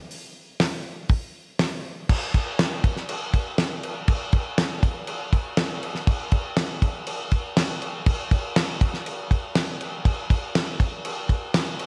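Gritty and swaggering, this straight 4/4 rock cut at 121 BPM features a damped 70s acoustic drum kit of kick, snare, hi-hat and crash cymbal, playing from 0.1 to 11.9 seconds with a fat snare, a tight kick, a dry, mid-forward, up-front presence and a vintage 12-bit sampler grit, shifting into a new section at 2.1 seconds, all set in a moderate scoring-stage reverb and captured on cassette tape.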